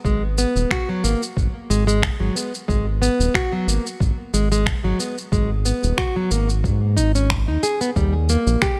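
A relaxed 4/4 groove at 91 BPM, with a light 16th-note swing, opens on a gritty, thumpy electronic kick drum and a round analog bass, joined at 0.1 seconds by produced electronic shaker and finger snaps. This short cut from a longer organic downtempo piece in G# minor feels mystical and earthy. The round, deep analog bass sits up front, reaching from D#1 to G#2 with a fast attack, sustained tone and sidechain pumping. Over this, a fingerpicked nylon-string guitar plays classical-toned arpeggios between F#3 and G#4, with fresh strings and a tape echo trailing its notes. The harmony rests on G#m7 before moving to D# at 8.0 seconds. A light reverb surrounds the mix, and the kick carries the sound of a large room.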